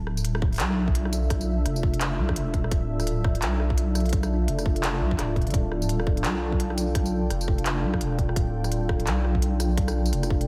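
A deep, soft wobble bass sits up front in this dark, tense slice of half-time drum and bass, its rounded sine-and-triangle tone held low in the D1 to B1 register with a touch of chorus. Above it, a moody analog pad sustains a Dmadd9 chord between D4 and G5, its detuned sawtooth body fattened by a sub octave, slow attack and long release, with chorus, vintage 12-bit sampler grit and sidechain pumping. The tempo is 170 BPM in 4/4 with a half-time feel and swung 16ths, settled in D dorian throughout this short excerpt from a longer piece. A tight, layered electronic kick enters at 0.4 seconds, re-recorded in a small room, while a tape-warm industrial kit of handclaps, smooth hi-hat, rim click and tambourine comes in at 0.1 seconds with its own small room reverb. The whole mix is soaked in a moderate, lush 1.8-second digital hall reverb, giving the brooding groove a dreamy haze.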